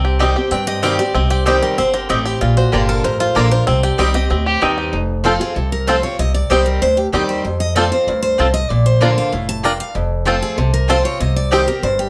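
Moderate studio reverb gives this short section of a longer bluegrass piece a natural sense of room, with the upright bass, lead guitar and fiddle placed up front. At a driving 191 BPM in straight 4/4 and C dorian, the mood is haunting, moving through C minor, B-flat and F chords. A bright, full-bodied dreadnought steel-string guitar picks the melody with audible finger squeak. Beneath it, a twangy, percussive banjo plays arpeggios with fingerpicks, and a woody, double-strung mandolin adds stabs. A warm archtop guitar picks the accompaniment, while the pizzicato gut-string upright bass gives a dark, thumpy foundation. A rich, smooth fiddle with light vibrato appears only briefly around 4.5 s, just before the music moves into a new section at 4.9 s.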